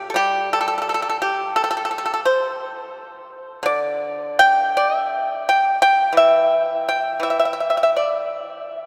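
Flowing and pastoral, this short piece of Chinese traditional music features a solo pipa, cut from a longer work and lasting 8.9 seconds. The pulse sits around 84 BPM in 4/4, but the beats are uneven and the phrasing moves freely in rubato, rooted in the D shang mode. Played with fingerpicks, the acoustic pipa has a bright, percussive attack and sits up front, ranging from A2 to G5. The instrument's own tone is dry, yet it is heard in a church or concert hall wrapped in a long cathedral reverb with a 4.9-second decay. That lingering space gives the single instrument an airy, spacious halo.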